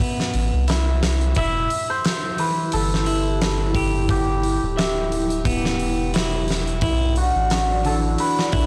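Smoky and cinematic, this swung trip hop excerpt sets picked, clean electric guitar arpeggios through a low-pass filter and delay against a big rock drum kit with a fat snare and punchy kick, joined at 0.3 s by a round, deep dub sub bass with tube saturation, at 1.4 s by a shimmering, hammered cimbalom melody trailing dub echo, and at 2.2 s by a moody, detuned analog pad with chorus and 12-bit sampler grit, inside a blown-out, overdriven recording with vinyl crackle and small room ambience.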